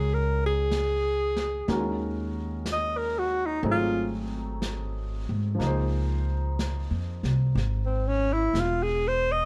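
A breathy alto saxophone solo opens this intimate, wistful jazz ballad excerpt, its clear subtone and vibrato sitting up front over a present grand piano and a woody pizzicato upright bass. At 0.7 s a dark, smooth brush kit slips in on snare and hi-hat, settling into a gentle swing beneath the saxophone. Light reverb gives the dark, warm production a soft glow as the harmony moves through Gbadd9, Ebm7, Ab7b9 and Dbmaj7.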